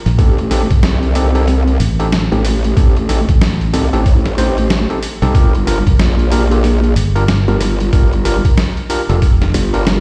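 Funky and playful, this glitch hop excerpt moves at 93 BPM in 4/4 with a 61% swing on the sixteenths, sitting in G minor and shifting from Am7b5 to Gm7 at 5.3 seconds. A compressed, pitched-down electronic kick drum sits up front with a thumpy, tape-warm punch, while a sampler-style boom bap kit adds gritty hi-hat and a medium-tuned snare, both re-recorded in a small room. The low end is shared by a round, fingered electric bass and a growling, wobbling growl bass whose formant filter, chorus and tube saturation give it an aggressive, sustained edge. Above them, an overdriven tine electric piano fires barky stabs through a combo amp, its sound pumping with sidechain and trailing delay. Light digital ambience and a large studio reverb frame the mix, which sounds as if played on a big sound system in a bare room.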